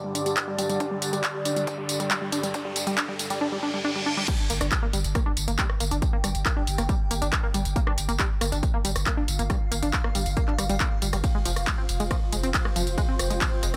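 Relentless and intense, this driving peak-time techno excerpt builds on a tight, detuned sawtooth synth riff with a filter sweep, chorus and dub echo, a resonant, wave-folded drone that stops at 3.4 seconds, a dark granular cloud pad, an electronic riser and reverse cymbal, and an up-front, tape-warm drum kit of hats, claps, rim clicks, tambourine, ride and crash over a heavy layered kick, until the drop at 4.3 seconds gives way to a thick, overdriven sub bass from 4.5 seconds, with sidechain pumping on the synth, drone, pad and bass.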